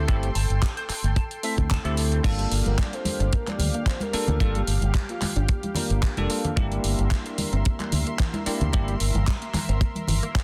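A tight, dry kick and an overdriven pop drum kit with crash, handclaps and hi-hat drive a lightly swung 111 BPM nu-disco groove in G dorian, joined by a punchy, envelope-filtered fingered bass up front, a bell-like tine electric piano, a lush, warbling unison pad, a twangy filtered electric guitar riff that stops at 2.2 s, and a detuned unison pluck playing arpeggios alongside background congas from about then, while a round, dark, octave-layered synth lead carries the melody from 2.7 to 6.3 s, giving a groovy, cosmic mood under light reverb and a dense, heavily limited master.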